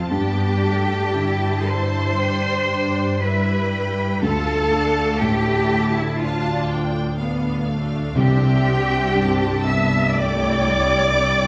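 An up-front, focused cello section carries the bass of this moving, uplifting cinematic film-score passage in a loose rubato feel, with a warm, lightly vibratoed violin section singing the melody beneath a lush, distant second violin line, a clear viola section and a smooth double bass section, while a felt-muted upright piano adds dark, intimate accompaniment with audible action noise, round, very quiet timpani enter at 8.2 s, and the ensemble sits in a wet scoring-stage reverb.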